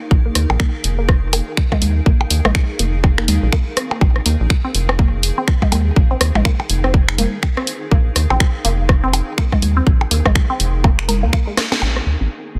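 A rubbery, hollow square-wave bass sits up front with tube saturation and sidechain pumping, bouncing under a tight electronic kick in this quirky, sparse minimal techno excerpt at 123 BPM in 4/4 with a 16th-note swing, built over a Bbsus4 chord. A garage kit of finger snaps, hi-hat and a cracking snare plays alongside a minimal click kit of percussion blips, rim clicks and toms with dub echo, while a squelchy resonant blip pluck with phaser and delay carries the riff. Far behind, a cloudy granular pad and a bright, pulsing gated texture with chorus hover in reverb, and a drum fill at 11.6 s leads into a band accent at 11.7 s in a dense, heavily limited mix.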